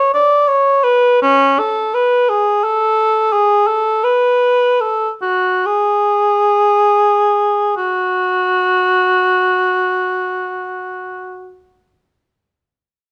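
Lonely and meditative, this classical excerpt features a mellow cor anglais playing alone and up front, shaping a free, rubato line from C#4 to D5 with light vibrato. The opening passage gradually slows until a new section begins at 7.8 seconds, and the cor anglais falls silent at 11.6 seconds. A moderate large-studio reverb and dark production surround the solo voice.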